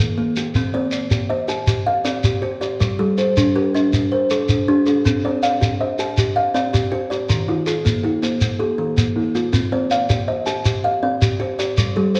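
A woody, airy kalimba plucked up front weaves a rippling, mbira-style interlocking cycle with a second, darker thumb-plucked kalimba over a grainy shekere in this southern African traditional piece at 107 BPM in a straight 12/8, moving through Cm, Gm and Eb in C equiheptatonic tuning, all heard as a short cut from a longer work bathed in recital hall reverb and the warbly pitch drift of worn old cassette tape.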